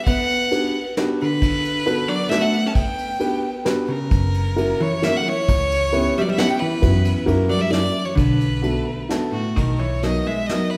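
A rubato musette waltz in three sways with nostalgic charm as a clear, biting violin carries the melody up front, its vibrato and airy bow strokes sounding intense. A clean, picked hollow-body electric jazz guitar traces a dark second line beneath it, while a mellow, woody and slightly boxy upright piano supplies the accompaniment and a soft brush drum kit with a punchy kick keeps time. A thumpy pizzicato upright bass joins at 4.1 seconds, and the whole excerpt sits in a reverberant recital-hall space before ending on a major turn at 9.6 seconds.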